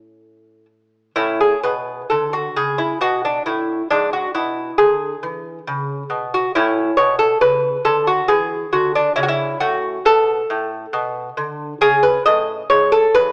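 A delicate, fingerpicked solo lute with paired gut strings, some doubled at the octave, sits up front in this serene, dance-like baroque-style classical fragment in triple time, its rubato phrasing moving from A through E7/G# and back to A before reaching C#m at 11.8 s, set in a moderate recital-hall reverb with a small-speaker sound.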